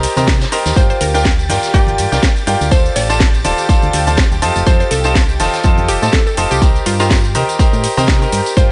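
A punchy electronic kick drives this soulful, energetic piano house cut at 123 BPM in 4/4, with a light swing on the sixteenths, entering at 0.3 seconds over a layered house kit of cracking snare and metallic hats that is already playing. Beneath them sit a very quiet, gritty acoustic indie kit with a fat, saturated snare, and saturated congas and tambourine in the background. A clear, intimate baby grand piano plays an up-front riff with audible action noise and long sustain, while a round, dark FM bass with a fast, decaying attack anchors the low end. Both pump against the kick, as does a silky, detuned string pad that holds sustained chords in the background with ensemble chorus and vibrato. From 0.8 seconds a hollow, bouncy square-wave pluck carries the melody, colored by chorus and digital delay. The harmony moves through Cm7, Gm7, Dm7 and F7 before returning to Cm7, all set in a small room in this excerpt cut from a longer piece.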